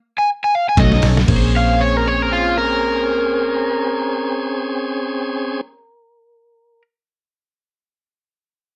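A crunchy overdriven guitar sings a brooding lead alone through an opening stop in this mournful straight-eighth soul blues excerpt in Bb minor at 118 BPM, until at 0.8 s a muffled, pitched-down sampler-style drum fill ushers in a round, foam-muted fingered bass, a shouting tonewheel organ turning on a slow rotary speaker, and twangy clean guitar stabs set back in the mix with chorus and slapback echo, the drums dropping out by 1.4 s as the band settles onto a Bbm9 in light reverb.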